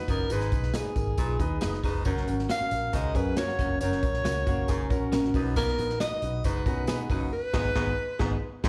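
A breathy, intimate alto saxophone opens this excerpt of uptempo 1960s-style soul, carrying the melody with a soft subtone, scooped notes and vibrato over a dark, woody upright piano, both touched by slapback echo. The band falls in immediately at a bright 137 BPM in F# major: a round, foam-muted fingered electric bass, a punchy, airy acoustic drum kit with medium-tuned snare, crash and hi-hat, and a jingly tambourine tucked into the background. A clear, roomy baritone saxophone plays a low riff, while a clean, compressed electric guitar adds chorused stabs and a hollow-body archtop guitar returns at 2.9 seconds with its own picked riff behind the horns. The chords move from G#m through F# and B back to G#m, and the band hits an accent from 7.3 seconds to the end. Heard as a live gig through the venue's PA with club reverb, the mood is warm and joyful.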